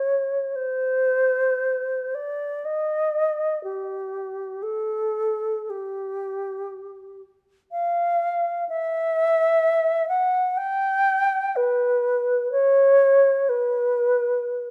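A wooden-headed alto flute sings alone from the very start, its pure tone shaded with vibrato and crisp attacks as it moves freely between G4 and G5 in this meditative, yearning classical excerpt. The solo sits up front in a moderate recital-hall reverb and runs until 14.7 seconds, tuned slightly low with A at 435 Hz.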